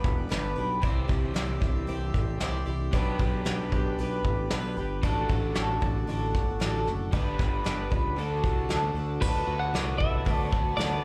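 A straight, steady 4/4 pulse comes from a soft brush drum kit, its punchy kick, medium-tuned snare, hi-hat and crash sitting up front yet sounding distant and roomy, alongside a growly, bright fingered electric bass that holds the low end. This short cut from a longer folk rock and heartland rock piece has a jangly, hopeful mood, built on a picked twelve-string acoustic guitar whose boxy, octave-doubled picking shimmers with slapback echo. Behind it, a double-tracked, crunchy overdriven electric guitar plays a riff with its own slapback echo, while a reedy, nasal hand-pumped harmonium breathes sustained chords in the background. The harmony moves through G, Cadd9, G/B and D/A before settling on D6, and at 9.2 seconds a clean, compressed twelve-string electric guitar enters with a short melody, also touched by slapback echo. The sound is that of a live club gig heard through the venue's PA, with little reverb.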